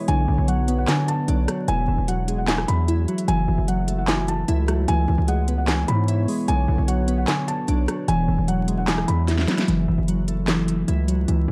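Eerie and melancholic, this half-time trap excerpt at 150 BPM in F# minor sets a soft, felt-muted upright piano melody with delay over glassy, phasered digital keys, a detuned, warbling pad in the background, a heavy, saturated 808-style bass up front and a crisp trap kit of handclaps, hi-hat, rim click and sharp snare, all in a dark production with vinyl crackle, where a drum fill at 9.3 s leads into a closing stretch in which the piano and pad drop out by 9.7 s, leaving keys, bass and drums to carry on to the end.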